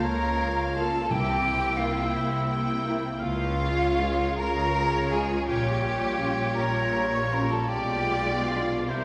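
A bright, airy silver concert flute stands out most in this tender, lyrical classical fragment, its soft-attacked vibrato line floating above a violin section that carries the melody with a lush, smooth top, all in a rubato 6/8 cut from a longer piece. A second violin section, rich and somewhat distant, joins a distant, roomy solo oboe in further supporting lines, while a close, focused viola section fills in the accompaniment. Cellos and double basses anchor the bass, the cellos even and the basses clear, with bowed vibrato throughout the strings. A very quiet, mellow French horn section holds sustained chords from 0.8 to 8.6 seconds, and round, soft-malleted timpani sound briefly between 1.1 and 2.1 seconds. The harmony drifts through shaded chords such as C7, Db and Bdim7, and a wet scoring-stage reverb gives the ensemble a spacious, cinematic glow.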